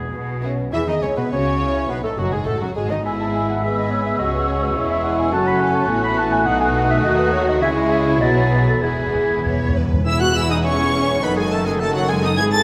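A lush, vibrato-rich violin section carries the melody in this graceful, spirited classical-period symphonic movement in E major at 104 BPM in a rubato 2/4, with a smooth second violin line, expressive violas, a rich cello section, a warm double bass section, mellow horns holding sustained chords, an airy crisp-attacked flute section, an oboe with light vibrato, a dark, distant clarinet and a vintage-toned bassoon all layered in a wet scoring-stage reverb, while close, dry timpani add a brief fill from 8.8 to 10.0 seconds.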